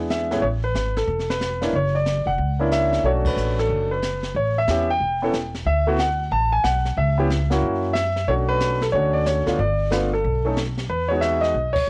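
A concert grand piano with deep bass, carrying the melody through a cassette-tape haze, opens together with a woody, pizzicato upright bass, and a brushed jazz kit with dark cymbals, a high-tuned snare and a boomy kick joins at 0.1 s in this sophisticated, relaxed swinging jazz piano trio excerpt at 183 BPM in A major, cut from a longer piece, where the home cassette recording in a small room frames a progression moving from Amaj7sus2 through Bm9, D69 and G9 to Emaj7, with the band hitting accents at 3.2 and 11.7 seconds.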